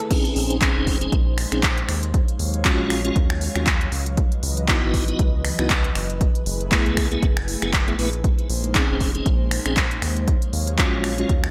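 A lightly overdriven tonewheel organ with key click, chorus vibrato, slow rotary speaker and delay plays piping, scooped stabs across this moody, smooth deep house drop at 118 BPM in Bb minor, cut from a longer piece, as a punchy electronic kick and an up-front kit of smooth hi-hats, finger snaps, handclaps and crash cymbal with gated reverb set a swung 4/4 groove, a round, dark analog bass with sidechain pumping holds the low end, and an airy, breathy pad with chorus and pumping sustains Bbm11, Ebm11, Dbm11 and Gbm11 chords, all wrapped in light digital ambience and bright 1980s-style production.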